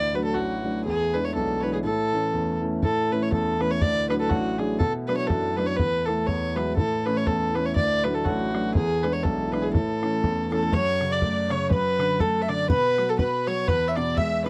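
Lively and bright, this Celtic folk polka in A major skips along at 122 BPM in 2/4 with a gentle swing, as an up-front fiddle with a reedy, gut-string tone carries the melody over a concert grand piano whose deep bass and long sustain anchor the accompaniment. A mellow, breathing pedal harmonium holds a drone in the background until 10.8 seconds, while a tight, damped bodhran enters at 2.8 seconds. From 10.5 seconds a very quiet, nasal, woody second fiddle and a round, double-strung picked mandolin add a second line, all captured in a dry, close 1970s-style studio sound in this short cut from a longer piece.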